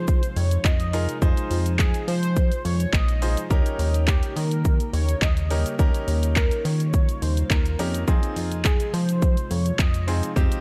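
This dance-pop excerpt has a confident, driving feel, moving over a straight four-beat pulse through minor seventh and dominant seventh harmony. A layered house drum kit sits up front with a punchy kick, handclaps, hi-hat and shaker, while a retro, glossy synth bass with a filter pluck and a chorused sheen pumps to the sidechain beneath it. A velvety synth lead carries the melody with a detuned sawtooth body, vibrato, a filter sweep and dub echo trailing its phrases. Behind it, a glassy, ethereal FM pad holds slow-blooming chords in the background, softened by ensemble chorus and reverb and breathing with sidechain pumping. From 0.9 seconds a clear, intimate grand piano adds polished accompaniment with audible action noise, also pumping with the sidechain. The digital ambience and dark production give the whole mix a warm finish.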